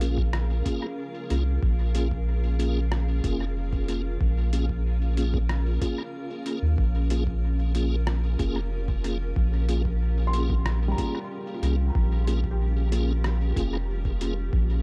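Set at 93 BPM in a straight 4/4, this hazy, spacious ambient dub excerpt sits on a single Bbm7 chord in Bb dorian, with a thumpy, muffled electronic kick entering at 0.2 seconds alongside a pitched-down, sampler-style kit of hi-hat and rim click, both overdriven, with the kick set far back in the mix. Up front, a deep, round sub bass with a soft triangle-and-square character holds the low end from the start. A tonewheel organ plays stabs with a piping, scooped tone, light overdrive, audible key click, chorus vibrato and a fast rotary speaker, its phrases trailing off into dub echo. Meanwhile, a granular cloud pad sustains blurred, evolving chords with a slow attack and long release, bathed in its own reverb. At 10.3 seconds a felt-muted upright piano adds intimate, mellow arpeggios with audible action noise and short sustain, also fed into the echo. The mix itself is dry on room ambience but heavy with echo, giving the piece a hazy, spacious sense of depth.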